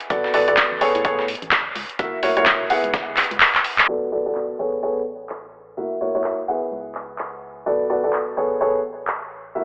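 A clear, woody upright piano riff with a slightly detuned, worn edge opens this soulful, bittersweet piano house excerpt at 127 BPM alongside a punchy analog drum machine with handclaps, hi-hat and crash, joined by a dark, hollow organ-like FM bass in the background, a punchy electronic kick, and a very quiet gritty, pitched-up breakbeat kit with a high-tuned snare, while the piano and bass pump against the beat, the piano trails dub echoes over Bm7, Amaj9, F#7 and C#m7, and after a drum fill a faint sub drop lands at 3.9 s as a filter sweep runs under a lush hall reverb and a telephone-like tone.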